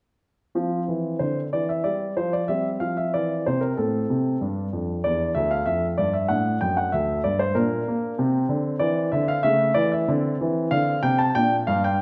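Graceful and elegant, this classical-period piano sonatina excerpt moves at 94 BPM in 3/4 with a rubato feel, set in F major and tuned slightly low at A4 = 439 Hz. A solo grand piano, polished and present with long sustain, sits up front from 0.5 seconds, ranging from D2 to A5 as its harmonies pass through chords such as C, Am, D, Bb and A/C# before settling on Gm/Bb near 11.4 seconds. A wet recital hall reverb with a 1.3-second decay surrounds the playing.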